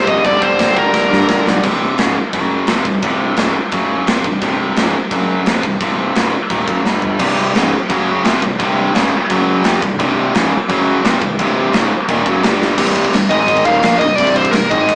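A high-gain lead guitar sits up front in this aggressive, heavy metal excerpt, its distorted, picked melody flashing at the very start and returning near the end at 13.3 seconds. Beneath it, a tight distorted guitar drives a bright, picked riff throughout, joined by a heavier high-gain guitar that drops out after the opening and returns at 7.2 seconds to thicken the riff. A fuzz-laden fingered bass growls punchy and overdriven in the background, while an acoustic drum kit with a tight kick, medium-tuned snare and glittering china and crash cymbals stands forward with an airy, polished big-room sound. Drum fills lead into each new section and also punctuate the middle of the excerpt, and the chords churn between power chords and minor harmonies in a straight, pounding 4/4. Moderate reverb places the band together in one room, yet vinyl crackle and a small-speaker quality give the whole recording a worn, lo-fi edge.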